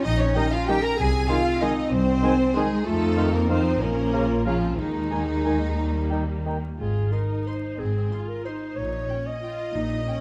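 In a flowing, rubato triple metre, this sweeping, elegant orchestral passage, cut from a longer classical piece, unfolds in about ten seconds of lush string and woodwind writing under a moderate recital-hall reverb and a layer of vinyl crackle. A rich, expressive violin section carries the melody from the background, while a second, more distant violin section, a mellow, roomy clarinet and a warm, lush viola section weave supporting lines beneath it. Up front, a bowed double bass section anchors the bass alongside a clear, even cello section, and a distant French horn section holds sustained chords until about 6.6 seconds. A dark cor anglais, a very quiet flute group with rolled-off highs and a background bassoon add colour through the opening six seconds before dropping out. The harmony moves through a series of chords, and a brief second section begins at 6.8 seconds as the strings and clarinet carry the music onward.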